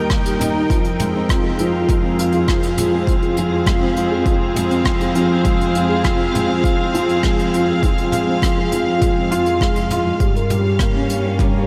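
A felt-muted upright piano anchors this cinematic, melancholic piece of piano and strings electronica, playing a soft, mellow riff thickened by ensemble chorus and trailed by diffuse ambient delay. Alongside it, a dark chamber string section holds woody, vibrato-laden sustained chords with sidechain pumping and shimmer reverb, while a warm studio cello section bows a smooth, floating bass line, sul tasto and tube-saturated, pumping as well. An overdriven, punchy electronic kick drum and an airy jazz brush kit with hi-hat, rim click and toms enter at 0.1 seconds and carry the straight 4/4 pulse at 101 BPM. The harmony sits in F minor, moving from Eb to Fm and reaching a Gdim chord at 10.2 seconds. Drenched in lush hall reverb, the mix feels dreamy and intimate across this short excerpt cut from a longer piece.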